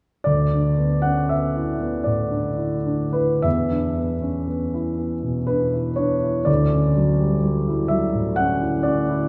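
Impressionist solo classical piano in D major, dreamy and luminous, drifts in a slow rubato 3/4 at 51-65 BPM as a clear, natural concert grand sits up front with deep bass, moving from Dsus2 through E5 to Dmaj9 in this short cut from a longer piece, bathed in a wet church reverb of 3.1 seconds.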